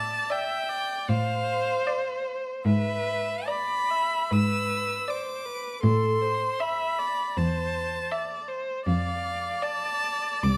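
A violin leads this tender, lyrical fragment of a slow romantic string quartet movement, singing a rich, focused melody high in its range with vibrato, over a viola and cello that sound from the very start. The viola's warm, expressive accompaniment uses vibrato and portamento, while the cello carries the bass in its low register with the same vibrato and gliding portamento, placed close and up front. At 0.3 seconds a second violin joins with a smooth, even line held within a narrow span beneath the melody. The phrasing moves with a flexible rubato through a harmonic path from Dm/A to E7/G#, settling on Am before closing on F6. Close, detailed microphones capture the bowing clearly, framed by a moderate recital hall reverb.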